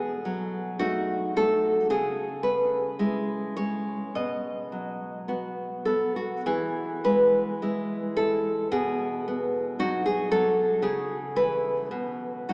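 A fingerpicked nylon-string guitar opens on a B7 chord and carries this sunny, tender romantic classical solo through a rubato 2/4 at about 50-58 BPM, moving through C#m7, B, E, B and C#m. Its up-front, acoustic tone has an audible finger squeak and is bathed in the 5.2-second wet reverb of a vast, echoing cathedral, yet it reaches the ear with a small-speaker sound in this 12.5-second cut from a longer piece.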